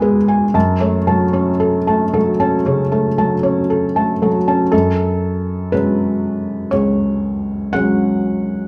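Rubato phrasing in a slow 4/4 gives this short fragment of neoclassical minimalist piano an unhurried, breathing pulse. A felt-muted upright piano plays alone throughout, spanning C#2 to E6, its soft, mellow tone sitting up front with the mechanical noise of its action clearly audible. The harmony moves from E to F#m within the first second, and at 4.7 s a second passage settles onto F#madd9. The mood is intimate and melancholic, and the tuning sits slightly low at A4 = 435 Hz. The piano was recorded live in one room, with a moderate large-studio reverb lending some air around the hushed felt sound.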